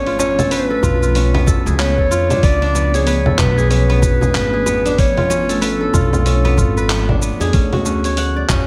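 A close-miked solo clarinet sings a mystical melody in C# phrygian dominant over crisp, ringing fingerpicked kora arpeggios with delay, woody pizzicato upright bass and an ethereal, detuned pad with chorus, phaser and sidechain pumping, all opening on C#7b9b13 in this organic downtempo excerpt at 94 BPM with a swung 16th feel. A gritty, tape-toned sampler kit of congas, handclaps, hi-hat and shaker joins with a distant, cracking djembe, and a thumpy compressed electronic kick enters at 0.8 s. The clarinet, carrying tape echo, stops at 7.2 s before the harmony shifts to Dmaj7 at 7.5 s, and light reverb gives the mix a gentle sense of space.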